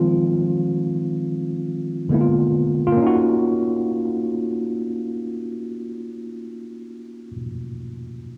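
Worn, warbling cassette tape with pitch drift and a light digital reverb gives this short hip hop fragment a hazy, melancholic air. A lone tine electric piano sits up front from 0.0 to 8.4 seconds, slightly out of tune and lightly overdriven, as if heard through built-in speakers. It moves in free time through Fm7 and Bb7b9 before settling on Ebm9 in E-flat dorian.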